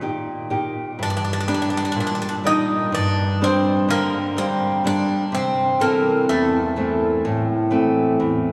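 A brilliant, metallic Greek bouzouki carries the melody up front from 1.0 s, its picked double strings with some octave-doubled courses ringing through a wet cathedral reverb. Beneath it a fingerpicked nylon-string guitar in a classical style, also brilliant and close, sets the accompaniment from the start, moving from Eb to Gm and then to Am at 5.3 s. This melancholic, wistful piece of Greek folk music at 125 BPM in 9/8 is a short cut from a longer performance, with the long, cavernous tail of a church or concert hall.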